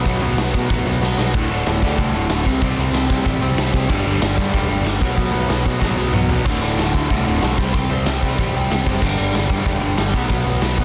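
A dense, heavily limited mix with light reverb puts a saturated, gritty drum kit up front, its punchy kick and medium-tuned snare set in a pumping stone room. This energetic, upbeat punk rock cut drives at 188 BPM in straight 4/4, with a double-tracked, overdriven guitar riff cycling through B5, D5, C5 and G5 over a bright, direct picked electric bass. Drum fills arrive at 1.0 and 5.8 seconds in this short clip from a longer piece.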